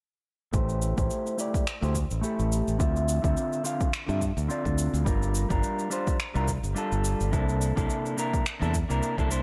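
From 0.5 seconds a twangy, slightly broken-up electric guitar sits up front with delay and a filter sweep over Am7, Dm9, Gm7 and C13, together with a punchy, bright fingered electric bass, a layered electronic kick and electronic cabasa with finger snaps, in a wistful, relaxed sunset chillout groove at 106 BPM with a light swing on the sixteenths and a touch of reverb, in a short cut from a longer piece.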